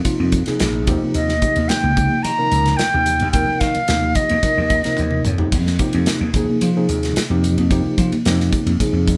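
This short excerpt sounds like a band playing live together in a small room, with a modest touch of natural ambience around the instruments. It is slick, nocturnal electric jazz fusion in a straight 4/4, built on a tine electric piano whose clean chords come through its built-in speakers, moving from Fm7 to Eb69 before settling on Fm9. A growly, amped vintage slap bass sits underneath with a punchy, bright edge, while an acoustic studio drum kit sits up front with a firm kick, a medium-tuned snare and an airy, polished finish. Very quiet, high-tuned congas with a thin skin add a faint percussive layer. A reedy concert flute carries the melody from 1.1 to 5.3 seconds, soft in attack, with vibrato, and placed prominently in the mix. A drum fill at 5.0 seconds leads into the closing Fm9.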